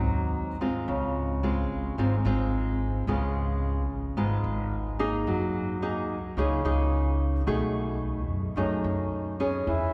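A straight 4/4 bossa nova pulse carries this relaxed, romantic fragment, cut from a longer piece. Up front, a fingerpicked nylon-string guitar with a dark, classical tone plays the accompaniment, opening on Ab7 before moving through Dbmaj7, Db7, Gb69 and Cb13. Beneath it, a pizzicato upright bass on gut strings gives a woody, thumpy low end. The players sit in a church or concert hall, wrapped in a long, wet cathedral reverb. Only at 9.7 s does an alto flute appear, pure and crisp in attack with vibrato, sounding a brief E4 before the cut at 9.9 s.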